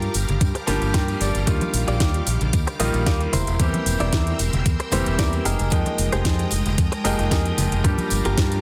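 A groovy, sunny nu-disco excerpt at 113 BPM opens on a Gm7 with brilliant baby grand piano accompaniment carrying a slapback echo, lush sawtooth string-machine pads pumping under an ensemble chorus, a twangy direct-recorded clean guitar riff with gritty sampler texture, an up-front bright fingered bass, an overdriven house kit of cracking snare and metallic hats, and ringing dry tambourine and congas. A thumpy electronic kick joins at 0.4 seconds, ahead of a guitar fill at 0.7 seconds, as the dense, heavily limited mix moves through Ebmaj9, C7/E and Fm11.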